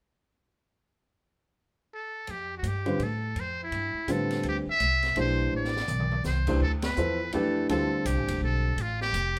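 Intense and hypnotic, this modal jazz fragment in D dorian swings at 166 BPM in a lilting 3/4, cut from a longer piece. A trumpet with a metal mute carries the melody from 1.9 seconds, its buzzy, brilliant tone shaded with vibrato, soft attacks and scooped notes as it sits up front in a jazz solo style. Upright bass and an open jazz drum kit join at 2.3 seconds as the harmony settles onto a Dm11, the pizzicato bass woody and up front while the kit brings dark cymbals, a high-tuned snare and a boomy kick. A warm upright piano enters at 2.9 seconds for accompaniment, intimate enough that its action noise can be heard. A drum fill arrives at 5.5 seconds, followed by a band accent at 6.8 seconds, and the group plays live together in one room under light reverb.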